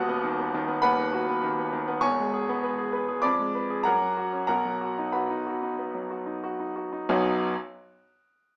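A bright grand piano carries this brief classical study alone, sitting up front with a natural, brilliant tone that suits its heroic character. Cut from a longer piece, the passage is in B major and 4/4, moving with a free rubato feel at roughly 91-101 BPM. The piano spans a broad compass from D#1 up to F#6, and its harmony travels from B/D# through C#m7/E and Fdim7 to F# before arriving on B at 4.5 seconds. The piano falls silent at 7.5 seconds, shortly after a new section begins at 7.1 seconds. A moderate large-studio reverb lends the instrument space, while the overall sound has the character of a small speaker.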